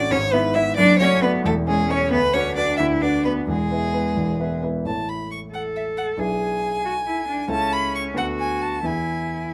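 Lively and graceful, this quick classical-period movement for piano trio moves in a lilting 6/8 at 86-93 BPM in A major, with a rubato feel that lets the phrases breathe. A single bowed violin, rich and smooth with vibrato, carries the melody up front, holding an even tone as it reaches up to C#6. Beneath it, a grand piano supplies the accompaniment from the deep bass to the middle register, its sound natural and up front with short sustain. A bowed cello, focused with vibrato and a smooth top, adds a second line from 0.1 seconds. The harmony passes through inverted chords on its way to E, then opens a new section at 4.9 seconds on A before returning to E at 8.8 seconds. Close, detailed microphones and light reverb give an intimate, clear sound to this brief cut from a longer piece.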